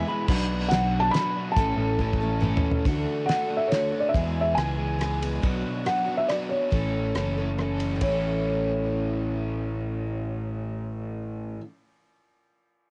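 Jangly and homespun, this brief folk-rock and heartland-rock cut in 3/4 at 139 BPM in A major opens with a clean pedal steel guitar heard only for the first 0.6 seconds, over a bright, full-bodied picked dreadnought acoustic with plate reverb, a double-tracked overdriven garage guitar riff and a round fingered electric bass, while a dry, damped 70s drum kit with a fat snare plays from 0.3 to 8.1 seconds with a fill at 2.0 seconds, and a mellow felt-muted upright piano carries the melody with audible action noise, all captured on a muffled cassette home recording.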